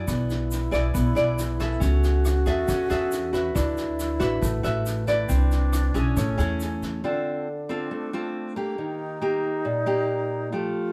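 Breezy and sunny, this bossa nova fragment in A major moves at 138 BPM in a straight 4/4, with an up-front fingerpicked nylon-string guitar and audible finger squeak, a woody, thumpy pizzicato upright bass, an airy alto flute with vibrato and tongued notes, a vintage brush kit with tight kick, rim click and a rolled-off top, and a grainy egg shaker in the background, all heard live in a moderate large studio reverb, until bass, drums and shaker stop by 7.0 s and guitar and flute carry on together to 10.9 s.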